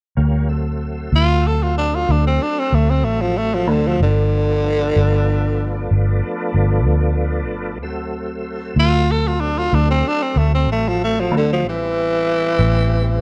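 Tonewheel organ chords, smooth through a slow rotary speaker with chorus vibrato, open this laid-back, gritty slow blues in 12/8 at 63 BPM, sitting low beneath a round, foam-muted vintage electric bass that is up front from 0.2 seconds. At 1.2 seconds a raspy, growling tenor saxophone takes the jazz-style solo, bright and present with vibrato, over chords moving from D9 to G9 and back before reaching Am7. Light reverb and a dark, warm production frame this excerpt, cut from a longer piece.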